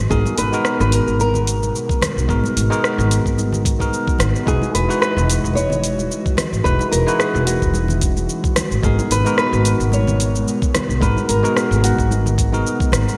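Blissful sunset chillout at 110 BPM with a gentle 16th-note swing, where a dark, fingerpicked nylon-string guitar carries the melody through delay over a bell-like tine electric piano with digital delay, a woody pizzicato upright bass, and a very quiet, airy, breathy pad with chorus sustaining G#m9 and Emaj9 chords, while a knocking electronic kick and a smooth R&B kit of hi-hat, rim click and shaker sit in small-room ambience with gated reverb on the kit, very quiet close, ringing congas add texture, and a lush hall reverb frames the bright 1980s-style digital production.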